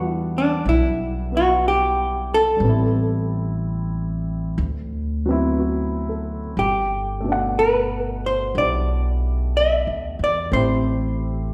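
From the first moment, a dark, clean electric hollow-body jazz guitar picks out the melody up front, over a warm upright piano and a pizzicato, steel-strung upright bass that is also up front, in an intimate, tender jazz ballad that swings gently through Em9, Am7, D13 and Gmaj7 chords, heard in the wet reverb of a church or concert hall across an 11.5-second stretch cut from a longer piece.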